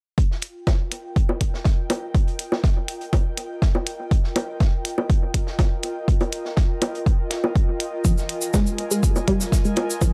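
A dry, gritty small-room recording opens this quirky, cool minimal techno excerpt at 122 BPM in F minor: a punchy, tape-warm electronic kick sits up front with clicky electronic hats and overdriven, layered bongos carrying tape echo, while a dark, rolled-off jazz kit's hi-hat and snare murmur beneath, an airy, breathy pad fades in on a held Fsus4 with chorus and sidechain pumping, and at 8.0 s a squelchy, resonant blip pluck riff with phaser and tape echo arrives alongside a grainy, bright cabasa.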